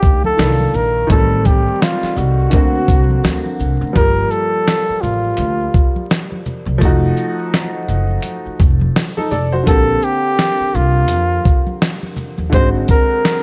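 A swung sixteenth-note groove from a gritty, compressed sampler-style kit with a thumpy kick and tape-warm sheen drives this nocturnal, cool jazz-hop excerpt, with close, dry congas and maracas tucked into the background. Woody pizzicato upright bass and a smooth, slightly detuned vintage upright piano carry jazzy extended chords beneath a breathy, intimate flugelhorn that leads the melody up front with vibrato and takes a solo from 4.0 seconds. Vinyl crackle and small room ambience frame the cut, and the bass stops at 12.8 seconds, shortly before the end.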